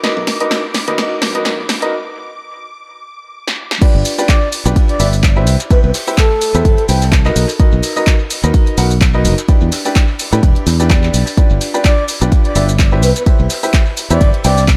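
Uplifting and euphoric, this piano house excerpt at 127 BPM with a swung 4/4 groove opens on a silky analog string pad, a clear, woody upright piano riff under a low-pass filter and analog delay, and a punchy, tape-toned analog drum machine with claps, hats, shaker and crash, all over a faint brushed kit and a bright fingered electric bass that joins at 0.2 seconds. After a filter-swept build-up and break, the drop lands at 3.8 seconds with an up-front layered electronic kick, as the pad stops and the piano and bass pump against it through chords moving from G7 to Cmaj7, Bmaj7 and Em7. A breathy, flute-like synth lead with subtle chorus and delay sings a short melody at 4.3 seconds and returns near the end, in an echo-heavy mix with light small-room reverb.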